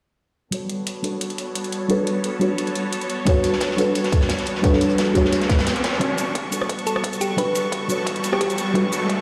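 A deep, mellow chord stab with a warbling, detuned vintage tone, soaked in chorus and digital delay, opens this uplifting, dreamy liquid drum and bass excerpt at 175 BPM in G lydian, resting on a Gmaj9#11 chord while a lush, bowed symphonic string section pumps beneath a low-pass filter and both parts carry a filter sweep through the first section. A drum and bass kit with metallic hats, rim click and shaker runs throughout, joined at 3.3 s by a tight electronic kick and a gritty, saturated breakbeat kit with a dark, rolled-off snare, while an electronic riser in the background builds from 4.2 s. In the closing build-up, a round, tine-like thumb-piano-like FM pluck sings a short melody through chorus and dub echo, all set in a concert hall reverb and a stone room played over a big sound system.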